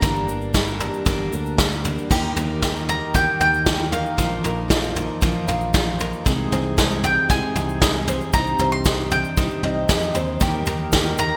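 Bright 1980s-style digital production and a moderate hall reverb frame this wistful, stirring indie folk excerpt at 116 BPM, where a mellow, double-stringed mandolin carries the melody over up-front brushed drums with dark cymbals and gated reverb, a round fingered electric bass, a shimmering, octave-doubled twelve-string guitar, a fingerpicked steel-string guitar with lush chorus that stops at 4.2 s, and a grainy egg shaker, while a reedy, breathing harmonium and a light tenor ukulele playing arpeggios join at 2.1 s as the arrangement builds.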